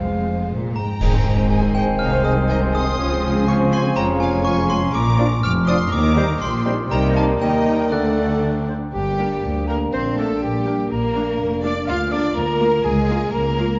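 This excerpt opens in a dark, roomy scoring-stage sound, with the high end rolled off. It is a playful, whimsical film cue with a sneaky, mischievous air, moving at 122 BPM in a straight 2/4. It starts in Ab major and turns toward G minor from 4.9 s. A background violin section carries the melody, doubled by a close, dry glockenspiel whose sparkling, bell-like strikes ring from 0.8 s to 8.6 s. A pure, crisp-edged silver flute and a rich, focused second violin section share a second line, joined by a warm clarinet from 1.0 s. Beneath them, a smooth, even viola section and a classical bassoon fill the accompaniment, while a distant French horn section holds sustained chords with a soft attack. An intense, up-front double bass section and an expressive cello section with portamento anchor the low end, and clash cymbals with concert bass drum punch out a band accent at 1.0 s.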